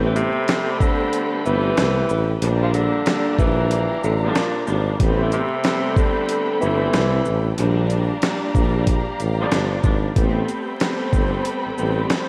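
Boom-bap hip-hop at 93 BPM with a swung 16th-note feel, this short excerpt cut from a longer piece has a tough, gritty mood, built on a dusty, thumpy sampler-style drum kit with kick, snare, hi-hat and shaker up front, and a breathy, punchy tuba carrying the bass with scooped notes. A clear tenor saxophone plays a jazz-style melody with soft attack and tape echo until 7.5 seconds, while a rich, close string section with a cassette tape colour plays accompaniment and a more distant string section holds sustained chords in the background. The harmony alternates between Am9 and Bb6 in a small room with light reverb and vinyl crackle.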